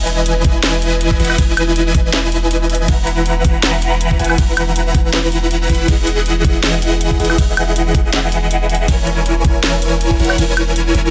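Huge, detuned supersaw chords sit up front in this playful, lush future bass excerpt, their sawtooth unison voicings treated with phaser, digital delay and sidechain pumping as they carry the riff from E3 up to A#5. Set at 160 BPM in 4/4 with a half-time feel and a light 16th-note swing, the piece moves through E lydian harmony, cycling from Emaj7 to a rootless G#m7/E, back to Emaj7 at 5.9 seconds, then to a rootless F#7/E. Beneath the chords, a deep, mellow 808-style bass holds a long sine tone on E1, its fast attack decaying while sidechain pumping makes it breathe. A trap kit supplies sharp snare, metallic hi-hats, crash cymbal and woodblock, while a knocking electronic kick drives the groove until it drops out at 10.4 seconds. Digital ambience surrounds the mix, and the clip is cut from a longer piece.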